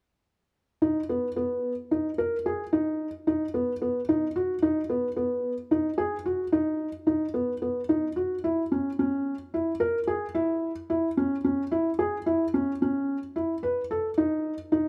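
Hypnotic and urgent, this contemporary instrumental excerpt in G# minor moves at 220 BPM in eighths through a straight 7/8, with a felt-muted upright piano playing arpeggios between B3 and B4 from 0.8 to 14.9 seconds, its soft, boxy, intimate tone carrying audible action noise up front under close, detailed microphones within a moderate recital hall reverb.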